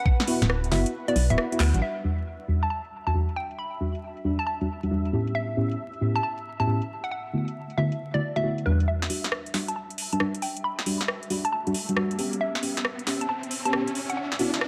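A hollow, bouncy square-wave pluck with chorus and dub echo carries the melody over a smooth, warbling analog pad held in the background with lush chorus and sidechain pumping, as this moody, late-night two-step UK garage excerpt in E dorian at 136 BPM swings in with an up-front, layered electronic drum kit of cracking snare, metallic hats, rim clicks and handclaps, soft, deep detuned chord stabs coloured by chorus and phaser moving through D69, Em7 and A9, and a dark, organ-like FM bass heard only until 1.8 s, before a build-up from 8.9 s brings filter sweeps on the stab and pluck and a riser entering at 11.3 s, all within a moderate hall reverb and a bed of vinyl crackle.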